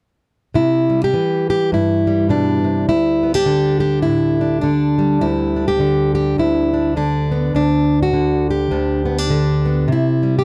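This folk fragment, cut from a longer piece, features a solo fingerpicked, plugged-in steel-string acoustic guitar playing from 0.5 to 10.4 seconds at 103 BPM in G major, with a gently swung eighth-note feel and a hopeful, warm mood. The guitar sits up front, ranging from D2 to G4 as it moves through C, Dsus4 and G5/D before returning to C. Its concert tone is captured in a dry, close 1970s-style studio recording, touched with light reverb.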